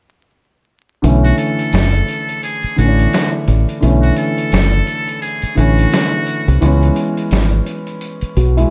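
A deep, round fingered electric bass sits up front in this gritty, moody boom-bap hip-hop excerpt at 86 BPM in B dorian, its dark, punchy tone anchoring a swung 16th-note groove from 1.0 seconds. A dark grand piano plays a mellow, intimate accompaniment with audible action noise and a vintage smoothness, filtered at both ends and moving from a rootless Bm11 to C#m7 at 6.6 seconds. A trip hop sampler-style drum kit carries only hi-hat and a medium-tuned snare, sounding compressed, pitched down and overdriven with 12-bit sampler grit, as if re-recorded in a small room. From 1.2 to 6.6 seconds a trumpet with a metal mute takes a forceful jazz-style solo, its buzzy, thin tone colored by light vibrato and scooped notes, set distant and roomy behind filtering and digital delay. Vinyl crackle runs throughout, and the overall sound is dry with little reverb.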